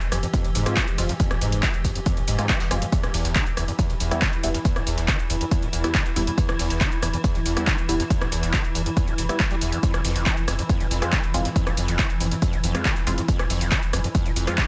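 A screaming, squelchy acid line with resonant filter sweeps, distortion, chorus and delay cuts through this dark, driving slice of peak-time techno, set over an up-front overdriven kick and a punchy analog drum machine of handclaps, hi-hat, ride, rim click and shaker re-recorded in a large room. Alongside it sit a thick, saturated sub bass and a swarming, tense granular drone, both with sidechain pumping, while muted, detuned dub chord stabs pluck through phaser and delay as the harmony moves between Fm and Em. A very quiet, gritty breakbeat kit adds hi-hat, snare and tambourine within a digital ambience.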